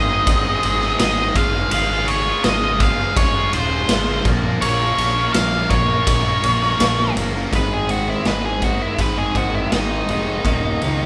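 Anthemic and cathartic, this quiet-loud alternative rock passage, cut from a longer piece and played live in one room with a large studio reverb, sets a dark, fuzzy octave-fuzz lead guitar melody over a bright, double-tracked overdriven rhythm guitar riff, a punchy fuzz-picked electric bass, and an up-front, gritty, saturated garage drum kit of kick, snare and ride cymbal, until at 7.5 seconds the lead breaks into a solo while a clean, compressed twelve-string electric guitar comes in behind it with spring-reverb arpeggios.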